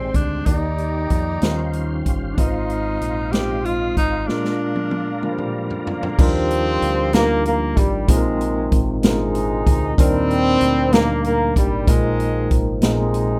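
Slow, jubilant gospel in 6/8 at 63 BPM in Eb major: a breathy, whispered tenor saxophone carries the melody until 5.5 s over clean tine electric piano, a tonewheel organ with fast rotary speaker and key click, a dark, round dub bass and an up-front swinging big-band drum kit that plays a fill through the break from 4.3 s, before a roomy horn section with slapback echo takes over the melody from 5.3 s in a rough home-demo mix with light reverb.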